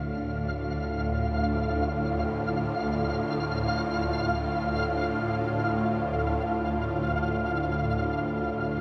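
Drenched in a cavernous cathedral reverb, this vast, ominous dark ambient drone in free time centres on D minor, where a swarming, detuned, up-front drone and a flickering, grainy texture hover over a warm cello section that fades in from the background with vibrato and a soft attack, while very quiet, mellow bronze gongs play arpeggios until 6.8 seconds in this fragment cut from a longer piece.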